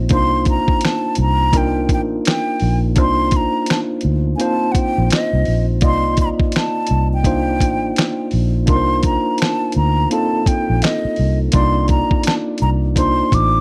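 Sultry and smooth, this short neo-soul and R&B passage, cut from a longer piece, settles into a relaxed swung groove that opens on a Cm11 chord. A dusty, sampler-style drum kit sits up front with a thumpy kick, fat snare, hi-hat and finger snaps, its compressed, gritty sound giving the beat a worn texture. Beneath it, a vintage muted electric bass played with the fingers adds a dark, round, foam-muted tone, thickened by tube saturation. A bright, clean tine electric piano supplies the accompaniment, while a breathy, mellow silver concert flute carries the melody with vibrato and tongued notes, its hollow, close-miked tone trailed by a slapback echo. The whole recording is dry and close, in the manner of a 1970s studio, with each part placed near the listener.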